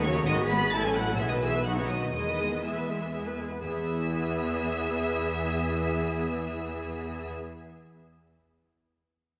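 Lively and cheerful, this brief cut from a quick classical-period movement for string orchestra moves in an uneven, rubato three-beat lilt that slows through its first 3.6 seconds, with a lush, focused first violin section singing the high melody over a distant, intense second violin line, an up-front, smooth viola section filling the accompaniment, a light-vibrato cello section in the background, and an up-front double bass section anchoring the bass, all bowed and bathed in a wet concert-hall reverb.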